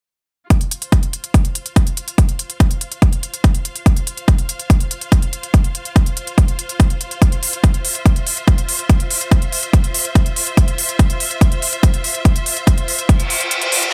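From 0.5 seconds an electronic kick drum, electronic hi-hat and a clear, bowed studio string section start together in this driving, psychedelic trance excerpt at 143 BPM in a straight 4/4. The kick is heavy, overdriven and up front, set in a small room ambience, while the smooth, layered hats carry the same overdrive and room sound further back in the mix. The strings fade in across the passage, holding a focused ensemble texture between F4 and F5 with vibrato, their level pumping against the sidechain. At 13.2 seconds a reverse cymbal rises up front, the kick drops out just before the end, and the hats and strings run on to the cut. Overall the mix is dry, with little reverb, keeping the produced electronic drums close.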